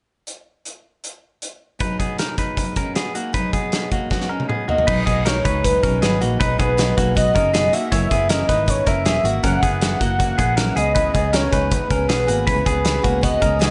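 Youthful and bright, this jangly indie pop excerpt moves at 158 BPM in a straight 4/4, set in B major. A loose, up-front drum kit opens alone at 0.3 seconds, with a punchy kick, medium-tuned snare, dark cymbals and a pumping room sound, and a drum fill carries it from 4.1 to 4.9 seconds. At 1.8 seconds a twangy, compressed clean electric guitar begins arpeggios through digital delay, while a full-bodied picked steel-string acoustic guitar with fresh strings picks along in the background. A velvety sawtooth-and-triangle synth lead takes the melody, smooth and sustained with vibrato, chorus and delay, joined at 4.9 seconds by a round, foam-muted vintage electric bass with an amped, dark tone. The harmony moves from B6 through F#7 to C#m7 in moderate studio reverb, with a softened top end.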